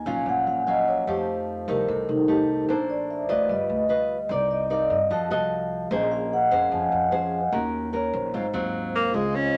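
A wistful, intimate bossa nova excerpt opens with a metallic, ringing vibraphone solo carrying a slow motor vibrato over fingerpicked, up-front nylon-string guitar and a woody, growly pizzicato upright bass, moving through rich minor-ninth and altered dominant chords until a clear, forceful tenor saxophone steps forward at 9.0 seconds with scooped notes and vibrato.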